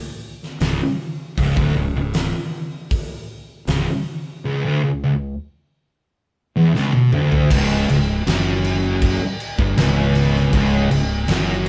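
A slow, straight 4/4 pulse at 79 BPM drives this hypnotic, ominous stoner and doom metal excerpt, played by a band live in one room with moderate studio ambience. A big, dark acoustic drum kit with a fat snare, punchy kick and rolled-off top sits up front, joined at 0.6 seconds by a thick, double-tracked fuzz guitar riff picked low between C#2 and B2, and a growly, overdriven fingered electric bass underneath. A drum fill from 6.7 to 7.5 seconds ushers in a new section that carries on until the cut at 11.7 seconds.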